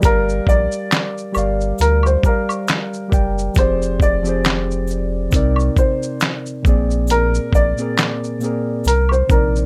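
A thumpy, muffled sampler-style drum kit sits up front with a fat snare, handclaps, hi-hat and shaker, driving this nostalgic, hazy lo-fi hip hop cut from a longer piece at 68 BPM in F dorian with a light swing. A deep, round dub sub bass holds the low end beneath a reedy electric piano treated with cassette tape and a low-pass filter, while a dark, woody upright piano with audible action noise and a slightly detuned, boxy tone carries the melody from 0.1 s. An egg shaker and woodblock add quiet acoustic texture, light reverb softens the mix, and the chords move from Gm7 to Fm69 at 3.6 s before settling on Cm7 at 8.9 s.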